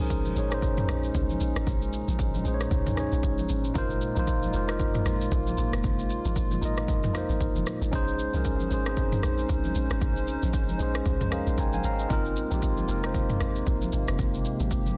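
Swung sixteenths drive this relaxed amapiano excerpt, where a punchy, up-front deep house kit of kick, rim click, shaker and toms sits over a round, dark log drum bass while a clean, mellow tine electric piano comps through Bbm11 and Ab69 chords and breaks into a brief fill at 11.1 seconds, a hollow, flute-like pad with chorus holds sustained chords beneath, and very quiet congas with bright, thin skins sound distant in a large room.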